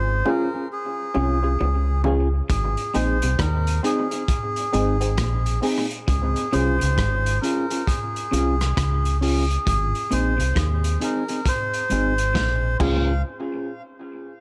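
A reedy, nasal melodica carries the tune up front through tape echo in this laid-back, hazy dub reggae excerpt in Db major at 67 BPM, its swung sixteenths riding over a round, deep fingered bass that sits prominently underneath. A twangy, very quiet clean guitar riff, a dark, mellow electric guitar with tape echo, and muted, detuned sawtooth chord stabs with chorus and short filter plucks fill in the background, while soft-handed, low-tuned bongos join during the opening break. A gritty, saturated breakbeat kit with dark cymbals and a tight kick enters at 2.5 seconds and closes with a fill from 12.4 seconds, all in a small room with light reverb.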